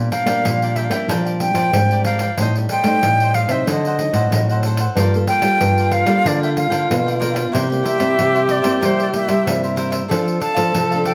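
Two nylon-string guitars open this sunny, joyful samba and choro fragment, cut from a longer piece: a full-bodied, thumb-plucked accompaniment guitar sits up front while a small, fingerpicked bass guitar with audible finger squeak stays in the background. A breathy, tongued concert flute carries the melody with vibrato and a slightly unsteady tone in a plate reverb, over a bright, crisp cavaquinho and a jingly, compressed, saturated pandeiro, with the harmony moving from Bb69 through Gm9 and C7 to F6. At 5.0 seconds a whispered, intimate tenor saxophone joins with a soft attack and jazz-style vibrato as a second line, all within a moderate studio room.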